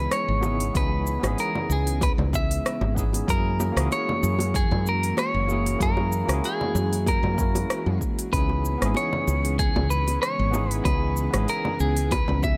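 A lightly swung sixteenth-note groove carries this relaxed sunset chillout piece: a deep house kit of smooth hi-hat, cabasa, congas and rim click enters at 0.1 s, soft low-tuned bongos join in the background at 0.4 s, and a punchy electronic kick lands at 0.8 s beneath a round, up-front woody fretless bass, while a clean, compressed electric guitar carries the melody with vibrato and delay over a tine electric piano heard through its built-in speakers and a breathy, detuned pad with chorus hovering behind, as the chords move from C#m7 to F#9 and back in a light reverb.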